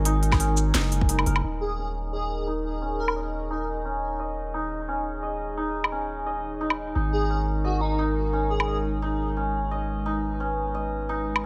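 This dark, tense half-time drum and bass excerpt at 174 BPM opens on a drop, with a moody analog pad, a shimmering hammered santur and a deep, sine-toned 808-style bass all sounding together over an Absus2 chord. The pad sustains slow-blooming chords coloured by chorus, phaser and sidechain pumping. The santur, up front and ringing, plays arpeggios through a low-pass filter and digital delay. The drum kit brings cracking snare, crisp low-passed hats, shaker and woodblock with a swung half-time feel, while a tight, tape-warm electronic kick punches in from 0.3 to 1.1 s. After the drop, filter sweeps move across the drums and the santur, and a soft, detuned lead with chorus, vibrato and delay floats an airy melody in from 1.6 s. The kit falls away and returns at 5.8 s, and at 7.0 s the harmony settles onto Abmadd9, all set in a light reverb and tuned slightly under standard pitch, at A4 = 437 Hz.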